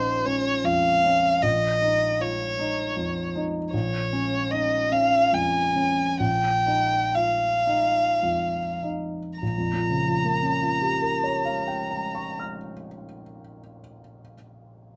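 Lightly reverberant and intimate, this excerpt from a longer classical piece places a close, bowed solo violin and a natural-sounding grand piano up front, with the piano's action noise audible. In a wistful, mysterious Bb minor, tuned to A4 = 436 Hz, the impressionist duo moves in a rubato 3/4 between 48 and 79 BPM, slowing from 2.6 to 9.4 seconds over colored harmonies. The violin carries an expressive, vibrato-rich melody with soft attacks and gliding portamento until 12.4 seconds, and the piano's accompaniment, spanning deep bass to high treble, lingers alone until 15.0 seconds.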